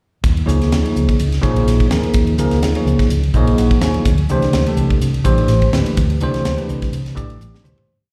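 Funky and driving, this short electric jazz fusion piece rides a swung groove over Eb9sus4 before shifting to D9sus4, built on a dark, round hollow-body fingered bass playing a syncopated riff and a crisp, polished drum kit with a high-tuned snare, punchy kick and a fusion ride pattern. Up front, a bell-like, bright tine electric piano comps funk chord rhythms in quartal voicings with a slapback echo, stepping out for a fill at 3.1 seconds. It sounds like a live gig heard through the venue's sound system in a moderate club ambience with recital-hall reverb, fading out from 6.0 seconds as a drum fill closes it at 7.4 seconds.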